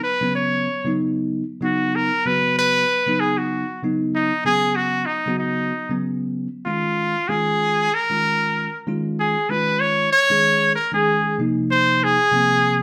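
Jazz in Eb minor at 95 BPM with a light sixteenth-note swing, funky and intense, cut from a longer piece. A brilliant, punchy trumpet carries the solo melody up front from the start, forceful and jazz-inflected with vibrato and scooped notes, while a bell-like tine electric piano enters at 0.2 seconds with bright, clean, direct accompaniment moving through suspended chords such as Gbsus4 and Eb9sus4. The two play live in one room, set in a wet studio reverb, across two matching sections that turn at 6.7 seconds.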